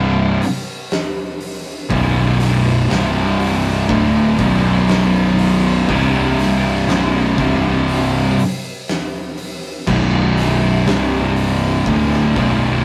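Two thick fuzz guitars, one up front and one in the background, open this brooding, sludgy stoner and doom metal excerpt with a heavy riff over C5, B5 and Bm chords, underpinned by a bright, growly overdriven picked bass, as an oversized low-tuned drum kit enters at 0.4 seconds with a boomy kick, fat snare, dark cymbals and a gritty, pumping room sound, all in a rough rehearsal-room recording with moderate stone room reverb.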